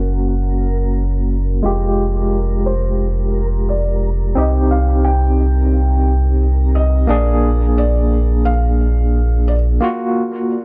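Smoky and hypnotic, this short trip hop excerpt in F dorian sways at 88 BPM with a swung 16th-note feel, built on a deep, round analog bass and a barky, bright tine electric piano whose tremolo and tape echo carry the chords from Gb through Fmadd9, Cm and Bb7. Above them, a felt-muted upright piano sings a soft, mellow melody with audible action noise and its own tape echo, while a reversed, granular swelling texture floats dreamily in the background. The dry, gritty recording has transformer saturation and a filter sweep running throughout, and in a brief break from 9.8 seconds the electric piano plays alone on a Gbmaj7 until 10.6 seconds.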